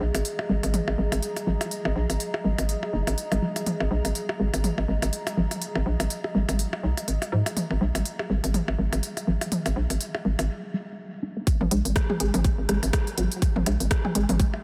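A hollow, knocking FM bass and a squelchy, resonant blip pluck with chorus, phaser and tape echo open this clinical, sparse minimal techno excerpt at 123 BPM, both pumping against the sidechain over a warbling, lo-fi pad soaked in phaser and its own reverb. Crisp garage hats, rim clicks and electronic percussion blips and toms trailing a diffuse ambient delay fill out the swung groove, all set in a dreamy cathedral-sized reverb. The pad drops out at 10.5 seconds for a brief break, and at 11.5 seconds a tight, overdriven kick punches in up front for the drop.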